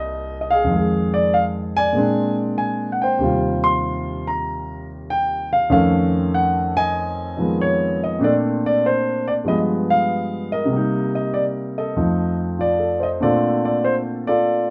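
A dark, mellow concert grand piano opens this playful, swinging solo jazz fragment, cut from a longer piece, and carries it alone from start to finish across a range from deep bass to high upper notes. Its harmony moves from Cm7 through Bb9, Eb69 and an F7alt before settling on Bbmaj9, then passes through G7b9, Cm7 and F7 to return to Bbmaj9 at 13.2 seconds as the opening phrase begins again. The piano sounds natural and up front, captured live in a studio room with moderate reverb.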